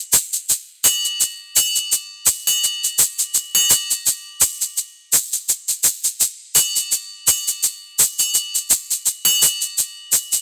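Trip hop at 84 BPM in 4/4, with a lightly swung sixteenth-note feel and a dark, smoky mood, taken from a longer piece. A single percussion part of egg shaker, triangle and group handclap plays from 0.1 to 10.4 seconds, acoustic, close and dry and placed up front. A light, small-room reverb gives the space a hint of air.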